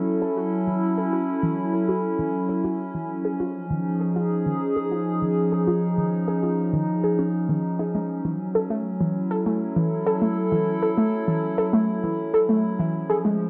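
A straight 4/4 pulse at 99 BPM carries this glitchy, eerie IDM excerpt, where a hollow, flute-like pad with a slow attack and long release holds chorused chords up front with vintage 12-bit sampler grit, while a warbling, dusty pluck, detuned and layered with noise, spins arpeggios through chorus, phaser, analog delay and a filter sweep over F#m7 and C#add9, all set in an echo-heavy mix with moderate spring reverb.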